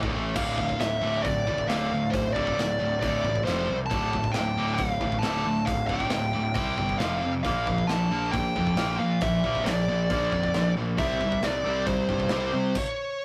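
A high-gain lead guitar sits up front with a dark, distorted tone, entering at 0.4 seconds and carrying the melody between C5 and A5 through digital delay. This is a short heavy metal excerpt in D minor at 136 BPM in straight 4/4, relentless and dark in mood, cut from a longer piece. Beneath it, two scooped high-gain guitars play the riff in a bright, distorted register from D2 to C4, one of them sitting in the background. A growly, fuzz-soaked picked electric bass, overdriven and placed up front, drives the low end from D1 to C3, while an acoustic drum kit with a punchy kick, a medium-tuned snare, hi-hat and bright crash cymbals keeps time. The harmony moves from Dm through F5, C5 and Bb to C, and the band comes to a stop at 12.8 seconds, leaving the lead guitar to ring on until 13.2 seconds. The sound is a rough rehearsal-room recording with light reverb.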